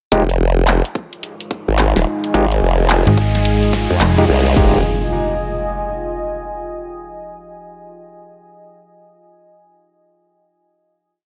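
A short, swaggering glitch hop piece in F minor at 108 BPM opens with mellow, stringy clav stabs, a chorused, overdriven formant-sweep wobble bass pushed up front, a punchy broken electronic kick and a swung pop kit of fat snare, handclaps, closed hi-hat and crash, all over an Fm7 chord in a dry, gritty digital space. Through the build a deep ambient pad with built-in reverb and a detuned, phaser-tinged analog pad with a filter sweep slip in beneath, while a riser arrives at 2.1 seconds and a snappy, metallic FM bass cuts in with chopped phrases at 3.1 seconds. At 4.6 seconds the riser and impact land on a final Fm9 chord that the ambient pad and effects carry to the close.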